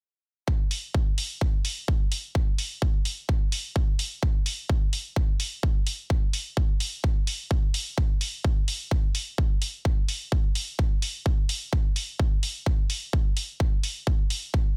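A punchy, layered electronic kick drum drives this short festival progressive house cut, sitting up front from 0.5 seconds to 14.6 seconds at a straight 128 BPM in 4/4. An electronic hi-hat joins at 0.7 seconds, also produced and placed close, carrying on until 14.4 seconds. Both drum parts carry a touch of small room reverb, while the overall mix stays fairly dry. The mood is triumphant and euphoric, drawn purely from this tight percussion pairing. Lifted from a longer piece, it holds a single section throughout.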